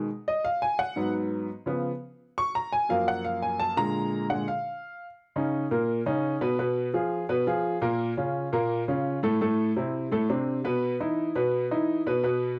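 This jazz piece, cut from a longer performance, has a sophisticated, fiery mood over a straight 4/4 feel. An upright piano carries the whole passage as the solo voice, with a woody, vintage tone and long sustain that sits up front in the sound. Its range runs from Gb2 up to Db6, and the first section gives way to a new one at 5.2 s. The harmony moves through colorful changes such as Abm7, Db7, Gbmaj7, Abm69 and Bbmmaj7 before closing on bare fifths. A moderate studio reverb lends the room a polished sense of space.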